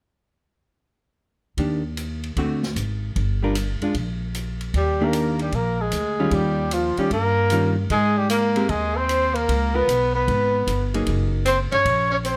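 Guitar, upright bass and drums open together at 1.6 seconds in a swinging, playful small-group jazz groove at 152 BPM in Eb major, the clean hollow-body guitar comping up front over a woody, thumpy pizzicato bass and an open kit with dark cymbals and a boomy kick. At 4.8 seconds a dark, close-miked trumpet takes the melody with vibrato, scooped notes and plate reverb, joined by a clear tenor saxophone on a lower second line with light vibrato. The harmony moves from Ebmaj7 through Eb9 and Abadd9 to Db7 and Gb69, and the guitar drops out at 11.4 seconds in this cut from a longer piece.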